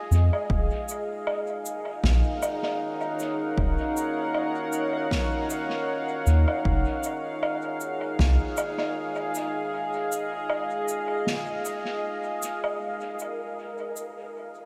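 Ambient dub in Eb minor at 78 BPM with a swung 16th feel, this hazy, deep excerpt cut from a longer piece sets a moody, chorused pad of sustained chords (Fm7, Ebm9, then Eb7sus2) up front beside a round, soft sub bass and a punchy, overdriven electronic kick, both stopping at 8.4 seconds, while distant, roomy cabasa, woodblock and snare drift through dub echo and an airy, breathy wind-like noise texture on Bb4 appears at 13.2 seconds, all soaked in a huge, dreamy reverb.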